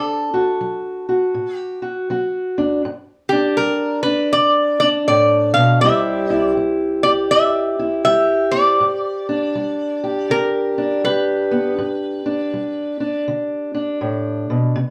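Acoustic country blues with a soulful, gritty mood, this short excerpt is cut from a longer piece and moves at an easy swung pace in 4/4. A lap resonator guitar carries the melody with slide and fingerpicks, its tone metallic and nasal, sitting up front with a touch of plate reverb. Beneath it, a fingerpicked steel-string acoustic guitar of the parlour sort supplies accompaniment in a dark, boxy voice, also up front in the mix. The harmony moves from D through G5 and C before settling on G, while the resonator drops out at 13.2 seconds and the acoustic guitar carries on until 14.9 seconds. The production is dark and warm, set in a moderate studio room.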